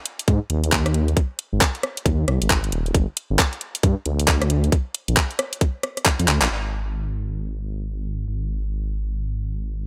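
UK garage in a two-step vein, this excerpt moves at 135 BPM with a swung, bouncy late-night feel, built on an up-front garage kit of handclaps, hi-hat and rim click layered over a tight electronic kick, both overdriven. A deep, rumbling detuned saw bass sits beneath, dark and saturated with a beating, sustained tone that blends sawtooth grit with sine weight, all set in a digital ambience. A drum fill at 6.3 seconds and a band accent just after lead into a closing stretch where the drums drop away from 6.5 seconds and the bass carries on alone until 9.9 seconds.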